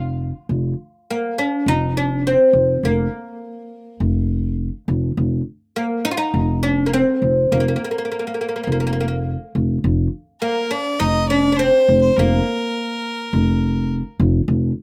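A pizzicato upright bass opens this stately Turkish makam ensemble excerpt at 0.0 s, holding a low F beneath a straight 103 BPM pulse in F makam hicaz. At 1.1 s a brilliant, woody fretless oud enters up front with the plectrum-plucked melody, its double strings giving the line depth. A nasal, airy violin joins at 10.4 s as a quieter second line with light vibrato, all captured dry in an open-air setting.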